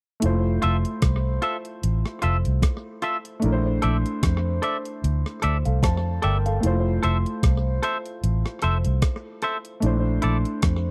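Lovers rock reggae in F major at 75 BPM, smooth and sweet, with a lightly swung 16th feel and a dry, close 1970s-style studio sound, cut from a longer piece. A dark, round, foam-muted electric bass sits up front beside a thumpy, overdriven 12-bit drum machine of kick, hi-hat and rim click with slapback echo, while a baby grand piano with long sustain and its own slapback echo plays accompaniment lower in the mix. A bright, twangy, compressed guitar adds picked stabs from 0.6 s as the harmony moves between Fmaj7 and Bbmaj9#11.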